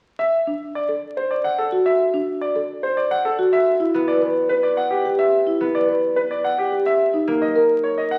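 A straight 3/4 pulse at 108 BPM drives this bright, hypnotic piece of minimalist classical pattern music in D mixolydian, where a brilliant, up-front concert grand piano carries the melody over woody, round soft-mallet marimba arpeggios, a ringing concert harp enters as accompaniment at 3.9 s, shortly after the harmony moves from D to a rootless G, and the music comes through a wet recital hall reverb on a very old 78 rpm record with audible vinyl crackle.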